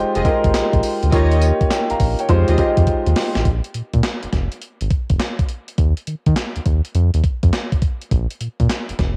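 A clear concert grand piano with audible action noise and a round, deep analog bass open this confident, punchy new jack swing excerpt at 103 BPM in Bb dorian with a swung 16th feel, as expressive bowed strings with vibrato and portamento add brief stabs in the background, a thumpy gated 80s drum machine with gated-reverb snare, handclaps, hi-hat and tambourine plays a fill from 2.3 seconds, the piano stops at 3.5 seconds, and bass and drums continue over the tape-colored sound of a home cassette recording.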